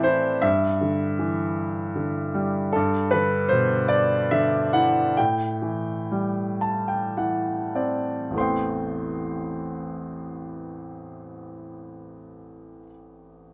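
Wistful and dark, this short passage cut from a longer classical piece features a lone grand piano playing lyrically in A dorian. The tempo drifts freely between 48 and 79 BPM in a rubato 3/4, easing into a slowdown from 2.7 to 8.3 seconds while the piano adds a fill from 6.1 to 8.3 seconds. The harmony moves through Em7/G, G6 and Am7 before settling on Am9 at 8.3 seconds, where a new section begins. The piano spans from A1 up to C6, and its tone is brilliant and open, with long sustain and a close, up-front presence. Light reverb gives the solo instrument a gentle sense of space.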